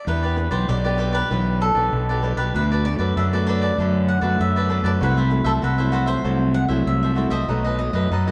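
A punchy, overdriven fuzz bass sits up front in this festive, sunny samba excerpt in E minor at 97 BPM, its amped, direct tone anchoring a small band heard live in a stone room with a wet, reverberant wash. Over it, one cavaquinho carries a crisp, picked melody while a second cavaquinho adds crisp, picked support, and a woody nylon-string guitar with old strings adds fingerpicked, classical accompaniment. The harmony moves from Em7 through Bm7/D and F#m7b5/C to B7, arriving at 7.5 seconds just before the cut at 8.3 seconds.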